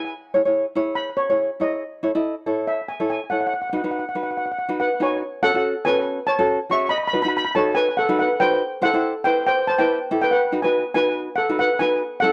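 Calypso at 141 BPM with a light swing, festive and bouncy, in a short cut from a longer piece. A shimmering, metallic lead steel pan played with medium rubber sticks carries the melody up front with a slapback echo. A mellow, fingerpicked tenor ukulele accompanies it through chords from C#m to F#madd9, B and C, all in a dry, close 1970s-style small room that moves into a second section at 5.2 seconds.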